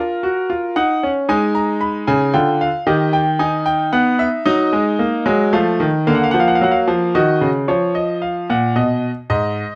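Set in a straight 3/4 pulse, this serious, solemn classical excerpt from a longer piece is a baroque-style three-part fugue for solo grand piano, its bright, brilliant tone sitting up front and intimate with audible action noise and long sustain, spanning G#2 to B5 through chords such as D#m, Dmadd11 and F7 under light reverb and a dark production, before shifting into a new section at 7.7 seconds that closes on B.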